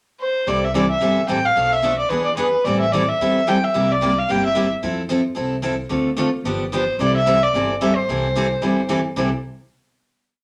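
A bowed violin sits up front with a nasal, boxy tone and even vibrato, opening on a short pickup at 0.2 seconds and spinning a charming, motif-based melody of call phrases in C major. This is a swinging piece of acoustic string swing in the jazz manouche style, moving briskly at 221 BPM in 4/4 with a light swing on the eighths. A bright, full-bodied steel-string guitar, also up front, enters at 0.5 seconds with four-to-the-bar rhythm chords, short and accented on two and four, and its fresh strings let some finger squeak through. Beneath it, a woody, thumpy upright bass with gut strings plays pizzicato two-beat root and fifth lines with walk-ups, set quieter in the mix. The changes move from C6 through Bm7b5, E7, Am7, C7, Fmaj7, Dm7 and G7 back to C6, and the violin returns at 6.7 seconds before guitar and bass settle on a final C chord, all heard in a wet small room.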